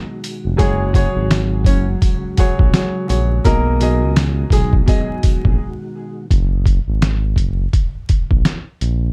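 A swung boom-bap groove at 84 BPM in 4/4 drives this soulful, nostalgic hip-hop excerpt in F# major, built on a gritty, pitched-down sampler-style drum kit with a thumpy kick, medium-tuned snare and hi-hat, sitting up front from 0.2 seconds. A smooth sawtooth-and-triangle synth bass with a fast attack and sustained notes joins at 0.5 seconds and carries through to the end, while faint, jingly sleigh bells sit in the background. A vintage grand piano plays short-sustained accompaniment through cassette-tape coloring, filtering and plate reverb, and a woody upright piano carries the melody from 0.6 seconds, treated with filtering, tape echo and plate reverb. Beneath them, a very quiet, flute-like tonewheel organ holds soft sustained chords with chorus vibrato and key click, the harmony moving between B6 and F#sus2. After the pianos and organ drop out around a brief break at 5.6 seconds, drums and bass carry the closing stretch, all wrapped in a dark production with vinyl crackle and little room reverb.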